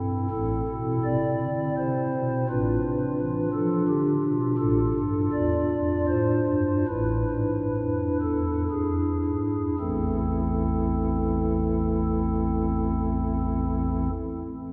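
A soft, hollow pipe organ sounds up front in a vast cathedral-like space, its tones hanging in a long, wet reverb. This short classical excerpt is a chorale-style piece in A minor and 3/4 time, grave and dark in mood, moving with a rubato feel between 54 and 87 BPM. The organ plays alone throughout on mellow stopped flute stops with tremulant, its romantic voicing spanning from a deep A1 up to D5. The harmony moves from A minor through D minor and E7 over an A in the bass, with the pace slowing from 3.5 seconds until a second section begins at 9.8 seconds on a return to A minor. Cut from a longer work, the passage ends at 14.1 seconds, leaving the church acoustic to carry its somber close.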